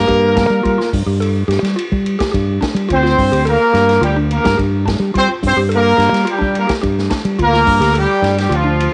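A straight 4/4 afrobeat groove at 107 BPM in G minor sits on a single Gm7 chord in this funky, hypnotic excerpt, with a punchy, tightly octave-doubled horn section carrying the melody with light vibrato over a round, up-front fingered electric bass, while a woody, percussive mallet-like synth pluck with chorus and phaser ripples arpeggios in the background and a vintage acoustic drum kit with dark cymbals, a medium-tuned snare and a punchy kick keeps time in a lightly reverberant studio room whose top end is rolled off.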